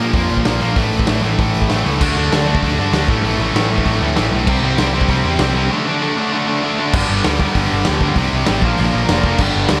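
Energetic and upbeat, this short cut from a longer punk rock track charges ahead at 194 BPM in a straight 4/4, with a slightly flat tuning. Two distorted electric guitars drive the riff from the first second, one tight and up front, the other compressed and set further back, both bright and picked. A growly, amped electric bass plays beneath them from the start, punchy and warm, while a raw garage drum kit comes in at 0.1 s with a punchy kick, a medium-tuned snare, dark cymbals and a rolled-off top that sits up front. At 2.0 s a third, sludgy guitar joins in the background, overdriven and double-tracked. The chords move through Bb5, A, D, C and G before closing on Bb. The sound is dry, with little reverb.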